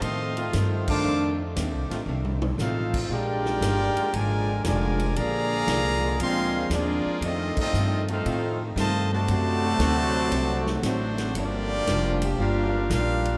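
Energetic and swinging, this short big band passage in F major moves at 116 BPM in 4/4 with a firm swing on the eighth notes, cut from a longer piece. A bright trumpet section with a smooth top carries the melody up front, while a close-miked trombone section with vibrato supplies a second line beneath it, and a quieter, clear trombone section with light vibrato and a soft attack holds sustained chords from 0.4 to 12.9 seconds. A pizzicato upright bass, woody and up front, anchors the low end, and a clean, compressed hollow-body archtop guitar, picked and amplified, sits in the background with accompaniment. The acoustic drum kit sounds natural and roomy, with a punchy kick, medium-tuned snare, hi-hat, ride, crash and toms, adding a fill between 2.1 and 2.6 seconds. The full band hits accents at 0.8 and 7.5 seconds as the harmony moves from F7 through Bb7, D7 and Gm7, all bathed in a wet cathedral reverb that places the ensemble in a vast, echoing space.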